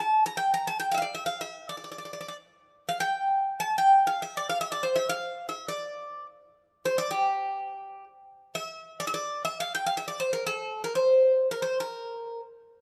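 A bright, metallic Greek bouzouki with picked double strings, some of them octave-doubled, plays solo and up front from 0.0 to 12.4 seconds in this melancholic, longing fragment of a Turkish makam piece in free time, moving between G4 and Bb5 in makam huseyni on G, and set in light reverb and studio ambience within a rough home-demo mix.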